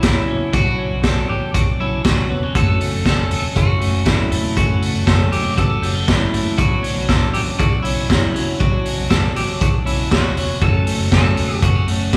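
A straight 4/4 pulse at 119 BPM drives this bittersweet, wistful jangly indie pop in B minor, with a gritty, saturated garage drum kit up front, all punchy kick, high-tuned snare and hi-hat, while a dark, round, foam-muted bass sits low beneath it. A twangy, slightly broken-up electric guitar carries the melody, with a bright, clean twelve-string electric picking arpeggios and a full-bodied, fingerpicked jumbo acoustic lending support in the background. The chords move between Bmadd9 and F#m, and a long, wet church reverb lends the whole short passage a spacious, hall-like glow.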